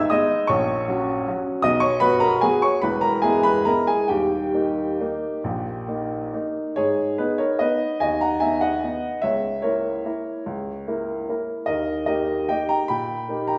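A lone upright piano, woody and up front with long sustain, opens this nostalgic, wistful classical waltz in G# minor, cut from a longer piece and tuned slightly below standard pitch. The 3/4 pulse moves with a free rubato between 129 and 166 BPM. It spans from deep bass to high treble, and its opening phrase moves through F#/A#, B, E and D# before a second strain begins on G# minor at 6.8 seconds and ends on D#, all within a wet, resonant hall.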